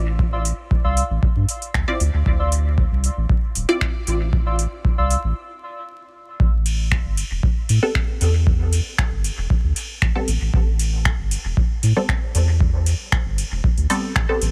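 Deep and hypnotic, this dub techno excerpt moves at 116 BPM in A minor, with a soft, round sub bass pumping under an overdriven electronic kick, while a booming analog drum machine adds finger snaps, metallic hi-hats and ride cymbal through dub echo. Warbling, nostalgic lo-fi synth keys carry a chorused riff until 5.1 s, and a filtered dub chord stab, resonant and phased with a filter sweep, drifts in at 1.9 s and returns from 7.8 s as the harmony shifts from Dm9 to Am9 after a short break. The sound is dry and close, wrapped in vinyl crackle.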